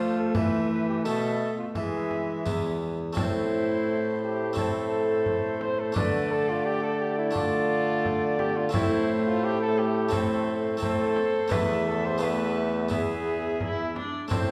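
A mellow, distant cornet carries the melody in this rustic, solemn renaissance-style consort dance in A minor, moving at 86 BPM in a straight 4/4. An airy wooden alto recorder with vibrato and a soft attack plays a second line, while a reedy, bowed viola with gut-string tone and a nasal, plucked harpsichord fill in the accompaniment. A trombone with light vibrato holds the bass, and a deep frame drum, close and dry, joins at 0.3 seconds. The harmony opens on Esus4 moving to E, settles into Am, Dm and Am again, then returns to Esus4 and E near the close. The consort sounds in the reverberant space of a church or concert hall, in a short passage cut from a longer piece.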